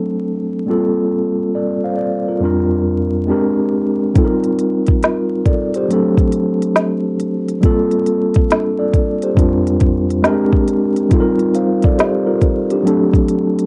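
A mellow tine electric piano, up front and clean, opens this nostalgic, cosy lo-fi hip hop excerpt at 69 BPM, moving through D7, Gm11, Bb69/F, Bb13 and Eb69 with a low-pass, cassette-tape sound as if heard through built-in speakers. At 4.2 seconds an up-front, organic electronic drum kit joins with a soft kick, a woody snare and crisp hats, swung on the sixteenths and tape-coloured. Light reverb, vinyl crackle and a dulled top end give it the feel of a home cassette recording, cut from a longer piece.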